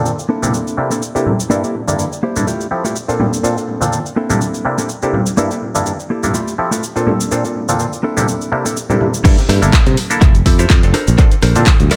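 Filtered disco house with a nostalgic, sensual mood, built on a swung sixteenth-note groove and a looping progression of rich extended chords like C13, Gm69, Fmaj9 and Bbmaj9. From the start a stringy, percussive clav plays the accompaniment up front, treated with phaser, analog delay, a low-pass filter and sidechain pumping, while a clean, compressed electric guitar, recorded direct and picked, carries a warm riff beneath the same filter and pumping. A tape-toned house kit of cabasa, hi-hat, rim clicks, handclaps and crash cymbal pumps along with touches of analog delay, and ringing congas and tube shaker, played with soft hands, sit distant in a large room behind a filter and echo. A filter sweep builds through the opening until the drop at 9.2 seconds, where a punchy, layered electronic kick and a bright, growly fingered bass enter up front, the bass also pumping and filtered. The echo-heavy mix carries light reverb and digital ambience, and this short cut from a longer piece stops just after the drop.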